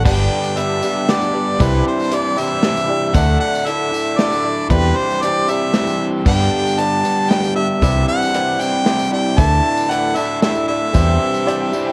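Jangly and hopeful, this folk rock and heartland rock excerpt moves at 116 BPM in 3/4 in G major, with an up-front harmonica carrying the melody with light vibrato and analog delay over a round electric bass and a natural country drum kit with a punchy kick. A crunchy, double-tracked overdriven guitar plays a riff with spring reverb, while a boxy picked swing-style acoustic guitar with finger squeak, a piping tonewheel organ with key click, a brilliant, very quiet concert grand piano and a jingly tambourine fill in the background over chords cycling from G through Cadd9 and Dsus2 to Cadd9/E. A woody upright piano with analog delay enters at 11.5 seconds with a brief second line, and the whole mix carries light reverb and the warbling pitch drift of worn cassette tape.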